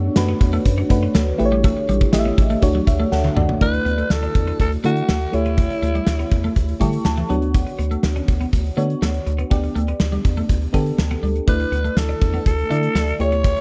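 A raspy, gritty alto saxophone carries the melody of this nostalgic, uplifting 1980s-style pop excerpt at 122 BPM in D major, entering at 3.6 seconds with vibrato and scooped notes through tape echo, then returning at 11.5 seconds. Beneath it, a gated 80s drum kit sits up front with a tight kick and a bright stone-room sound, and a round, deep analog bass anchors the low end. A warbling FM electric piano with phaser provides accompaniment, a twangy, clean twelve-string electric guitar plays a riff through analog chorus and tape echo, and an ethereal, very quiet pad holds chords only in the opening bars before a drum fill leads into the next section.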